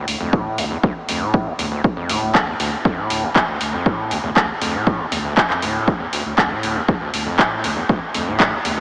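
Drenched in a huge, dreamy reverb with an 8.3-second tail, this excerpt from a longer acid house track has the sound of a small speaker. At 119 BPM in a straight 4/4, it sits on a single D minor chord and feels gritty and driving. Up front from 0.0 s, an overdriven acid bass plays a squelchy, resonant square-wave riff between D2 and A2, its filter sweeping and its saturated notes decaying through tube saturation, cassette tape grit, analog delay and sidechain pumping. Beneath it, a deep, round sine sub bass holds D2 with its own tube saturation and pumping. A booming analog drum machine brings handclaps and metallic, tape-tinged hi-hats, while an overdriven electronic kick enters at 0.3 s with a punchy, forward thump.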